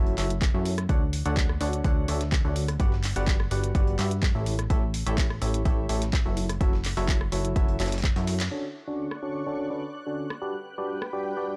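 A dry, gritty hardware recording carries this euphoric, uplifting piano house excerpt in D major at 126 BPM, where a biting, barking FM electric piano riff with chorus and sidechain pumping rides over a punchy, funky analog bass, an up-front electronic kick, layered garage handclaps, hats and rim clicks, and a very quiet, tape-warm breakbeat sampler kit through chords moving from F#m7 to Dmaj7, Gmaj7 and A7, until a drum fill from 8.0 seconds and a band accent at 8.4 seconds give way to filter sweeps on the drums and electric piano as a silky, bright analog string pad enters at 8.9 seconds.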